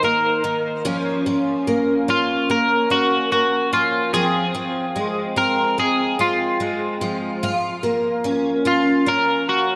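A clean, bright electric guitar carries the melody up front, treated with analog chorus and tape echo, over shimmering, octave-doubled arpeggios from a picked twelve-string acoustic guitar that is also up front and colored by ensemble chorus and tape echo. This dreamy, blissful dream pop sits at 73 BPM in a straight 4/4 in G-flat Lydian, moving from Gbmaj7/F to Fm at 4.1 seconds and Bbm at 7.4 seconds. Both guitars play throughout this passage cut from a longer piece, bathed in a wet concert hall reverb with a 2.0-second decay.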